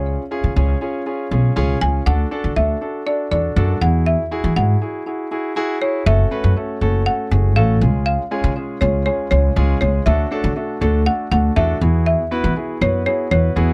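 An up-front upright bass leads the sound of this energetic, confident dance-pop excerpt, its pizzicato steel strings giving a woody, acoustic punch at 120 BPM in a straight 4/4 feel in F# minor. Above it, a folk marimba struck with medium hard mallets carries the melody in a narrow upper range. Its hardwood bars sound dry and rustic, sitting mid-forward with a touch of tape echo. A grand piano supplies accompaniment with long sustain and a gentle warmth, and all three parts play throughout the cut. The harmony circles through C#, D and Eadd9, with a break from 5.1 to 6.1 seconds before the second section opens on F#m at 6.1 seconds and returns to the same progression. The close, nearly reverb-free recording has the intimate feel of a 1970s studio session.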